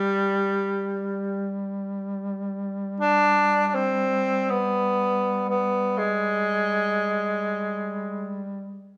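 Caucasian folk lament in free time, solemn and mournful, heard in a short excerpt cut from a longer piece. A clear tenor saxophone carries the melody from the start, moving between G3 and D4 with light vibrato, soft attacks and a classical poise, its tone sitting distant and roomy yet still up front. Beneath it, a mellow duduk holds a drone on G3 in a folk style, its soft-attacked, scooped notes colored by vibrato. The saxophone stops at 8.5 seconds, leaving the duduk to sound alone until 8.9 seconds. A moderate recital hall reverb surrounds the pair, lending the lament a grave, spacious stillness.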